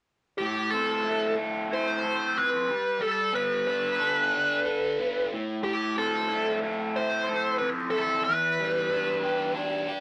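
A vinyl crackle sits under a moderate studio reverb, giving this short rock fragment, cut from a longer piece, a mysterious, hypnotic air in a straight 4/4 feel. A raw garage guitar carries the riff from 0.4 s to 10.0 s, double-tracked and up front, its picked tone overdriven and warm, with a phaser colouring it as it ranges from E2 to A4. Above it, a smooth overdriven lead guitar plays the melody from 0.4 s to 9.5 s, a dark, picked electric voice run through wah and confined to the narrow span of G4 to C5. The harmony moves from Am to Gadd9, back to Am, and settles on Em7 near the close. The pairing of the gritty, doubled riff and the shadowy wah-tinged lead keeps the mood brooding and trance-like throughout.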